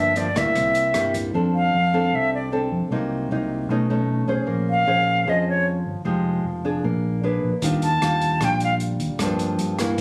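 Sophisticated and romantic, this bossa nova fragment at 153 BPM sets an airy, up-front silver concert flute with soft attack and vibrato over a warm, fingerpicked nylon-string guitar, a dark, round fingered electric bass and an open jazz kit of hi-hat, boomy kick and rim click that drops out after 1.2 seconds and returns at 7.6 seconds, while the flute takes a solo from 1.3 seconds over rich chords moving from F6 through Bbm9 to Ebmaj9, captured on a phone in the room with light studio reverb and compression.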